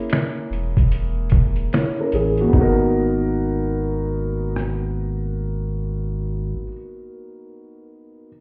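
This reflective, melancholic lo-fi hip hop fragment, cut from a longer piece, moves with a lazy swing on the sixteenths. A soft, felt-muted upright piano sits up front with intimate comping, colored by cassette tape, a low-pass filter and plate reverb, shifting from a rootless F#9 to G#m9. A sampler-style kit of finger snaps, hi-hat, rim click, a thumpy kick and a fat snare sounds compressed, pitched down and tape-warm, as if re-recorded in a small room, and it drops out at 4.8 seconds. Beneath it, a deep, round sine sub bass with a fast attack holds long mellow notes until 6.5 seconds, while the piano lingers on to 8.3 seconds. The whole mix feels heard through a wall, with a stone-room reverb lending a hazy, distant cast.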